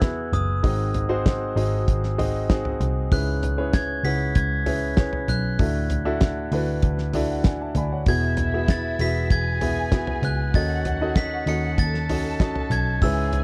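An anthemic, uplifting piano-driven pop excerpt at 97 BPM opens with a bell-like glockenspiel melody struck with brass mallets over a polished, up-front grand piano, a round, foam-muted picked electric bass and a dry 70s drum kit with a fat snare and tight kick, as the piano plays a fill at 6.8 seconds before a lush, distant violin section enters with a second line at 8.1 seconds, the whole piece carrying the dry, warbling pitch drift of worn cassette tape.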